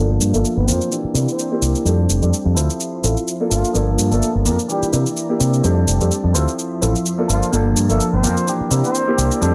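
Filtered disco house at 127 BPM in 4/4 with a light 16th-note swing, this funky, sunny excerpt cycles through Gm9, C9, F69 and Dm9 under a filter sweep running the full 9.5 seconds, as an up-front, bright fingered electric bass anchors a brilliant, short-sustain grand piano, a clean, twangy envelope-filtered guitar riff and an analog-sounding cabasa, while a lush, slow-attack string machine with phaser and ensemble chorus sits in the background and a clear horn section with vibrato and octave doubling carries the melody through vintage 12-bit sampler grit, all in light digital reverb.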